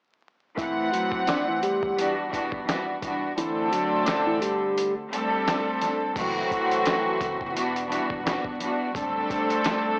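Boom-bap hip-hop with a reflective, tough mood, cut from a longer piece, where up-front bowed strings with a reedy gut-string tone and a cassette-tape cast carry the accompaniment throughout, a dark, clean, fingered electric guitar with subtle chorus plays the melody from 0.6 to 4.9 s, a gritty, pitched-down sampler-style drum kit with a thumpy kick, crash, hi-hat and snare swings beneath them with the kick muted from 3.4 to 6.2 s, and a deep sine-and-triangle sub bass with octave and tube saturation sits in the background from 6.2 s, all under light reverb, vinyl crackle and a small-speaker sound.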